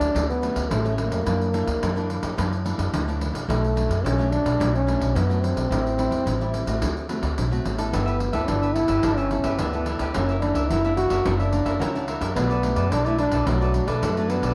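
A festive, lively samba and choro excerpt at 108 BPM opens with a mellow, breathy trombone playing a jazz-style solo melody with vibrato and scooped notes over a woody, thumpy pizzicato upright bass up front, a fingerpicked classical nylon-string guitar in the background and a jingly, distant pandeiro, before a crisp, picked cavaquinho joins at 7.9 seconds, the whole set in a moderate echo-chamber reverb over chords moving from Dmaj7 through G69 to Bm7.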